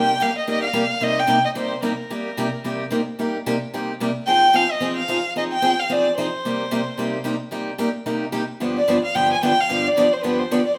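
A warm, intimate violin and a bright, boxy picked steel-string acoustic guitar open together in a fiery yet bittersweet jazz excerpt in C minor, swinging at 221 BPM in 4/4. The violin carries the melody up front with light vibrato, an airy sul tasto bow and a soft attack, while the parlour guitar's fresh strings ring out the accompaniment over a Cm7, Fm7 and G7 progression. The duo plays live in one room, wrapped in a wet large-studio reverb, with the guitar stopping at 10.6 seconds just before the violin's last note at 10.8.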